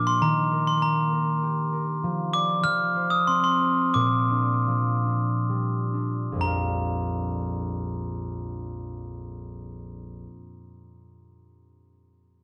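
A bright, bell-like glockenspiel struck with hard plastic mallets carries the tender melody from the opening moment, sitting up front over a mellow, thumb-plucked concert harp that supplies the accompaniment in a gentle 3/4 lullaby in Bb major. The tempo moves between 63 and 99 BPM and slows between 2.0 and 6.4 seconds as the harmony passes through Eb, Dm/F and Bb6, before the piece shifts into a new section. The sound is dry and close, like a 1970s studio recording, with both instruments ringing until about 10 seconds in this portion of a longer children's piece.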